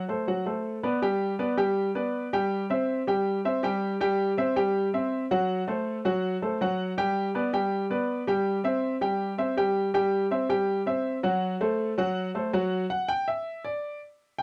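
A dry, close studio sound with a 1970s character and light reverb frames this short latin clip, cut from a longer piece, in which a smooth, vintage grand piano sits up front. Sunny and danceable in a straight 4/4, the piano moves from a D7 through G and C to an F#dim, cycling back through G and C before reaching a final unaccompanied stretch from 12.9 s that closes out at 14.4 s.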